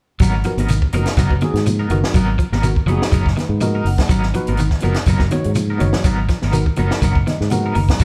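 Lightly reverberant and captured as a band playing live in one room, this driving, funky afrobeat excerpt at 123 BPM carries a swung sixteenth feel over a G#m9 chord in G# dorian. A round, up-front fingered electric bass and a tight compact cocktail drum kit with a high-tuned snare, hi-hat and kick lay the groove, joined by a grainy, mellow shekere and very quiet thin-skinned congas. Two slightly broken-up, picked electric guitars add arpeggios in the background and bright, twangy stabs with tremolo, while a worn, slightly out-of-tune tine electric piano enters at 0.4 s with fills at 3.1 s and 7.0 s.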